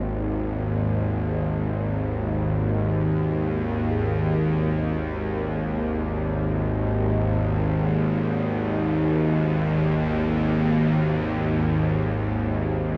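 A cavernous, tape-worn haze with an 8.4-second reverb tail frames this ominous, desolate dark ambient drone in free time, where a tense, sawtooth-edged bowed-like drone, detuned and vibrato-laden with a noise layer, sits bright and up front in its low register for the full 13.0 seconds while very quiet bronze gamelan-type bossed gongs ring round, beating arpeggios until 10.6 seconds.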